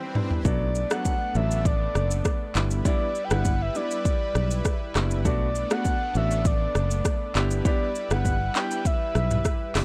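Afrobeats at 100 BPM in B minor with a mellow, smooth mood, this excerpt opens on a short break where an electronic swell and a drum fill lead in before the groove settles at 0.5 seconds over alternating Bm7 and G6 chords. A breathy, flute-like synth lead with vibrato and chorus carries the melody above a lush, detuned unison pad with sidechain pumping and a polished grand piano with long sustain, while the up-front drum kit brings a deep kick, metallic hats, handclaps, rim click, shaker and toms. A round, foam-muted fingered electric bass enters at 0.5 seconds, and the whole piece has a dry, gritty hardware sound with little reverb.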